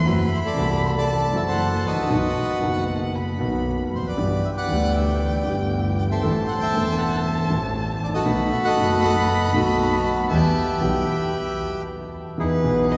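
This passionate, sultry tango fragment opens with the whole quartet at once, moving freely in a rubato feel. A dark, reedy bandoneon carries the melody close and up front, its dry, full tone set against a bowed violin that sings a second line with vibrato, portamento and expressive phrasing. Beneath them, a warm, smooth grand piano with a vintage character supplies the accompaniment, while a single bowed double bass, clear and intense with a light vibrato, anchors the low end. The harmony moves through F#m7b5, B, G6, Am and B7 to Em before the ensemble halts at 11.3 seconds. At 12.4 seconds, brighter bandoneon stabs land on an Emaj7 as the fragment breaks off. A long, wet cathedral reverb surrounds the ensemble, giving the performance the spacious ring of a church or concert hall.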